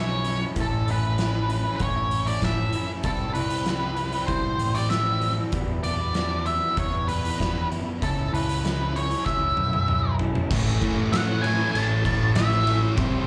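Quiet-loud alternative rock at 97 BPM in A major, anthemic and restless, heard as a live gig through a club PA, where a dark octave-fuzz lead guitar carries the melody up front over lo-fi, slightly broken-up arpeggios from a small old amp with analog chorus and slapback echo, a growling overdriven picked bass, and an oversized low-tuned drum kit with a fat snare, punchy kick and dark cymbals in a pumping stone room, until a drum fill at 9.3 seconds gives way at 10.5 seconds to double-tracked distorted and fuzz guitar riffs in the background and a very quiet, shimmering vintage string machine holding sustained chords.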